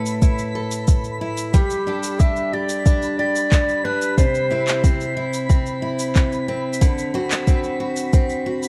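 A dark production with light reverb and a small room ambience frames this playful folktronica excerpt, built on a bright, full-bodied steel-string acoustic guitar picking arpeggios up front, with fresh-string finger squeak and a touch of digital delay. A soft electronic kick sits forward beneath an electronic shaker and handclaps, while a twinkling granular texture adds a sparkling, octave-up shimmer high above. At 1.5 seconds a mellow, vintage-sounding clarinet takes a classical-style solo melody, echoed by delay, until 5.5 seconds, as the harmony moves through suspended chords to C and D7.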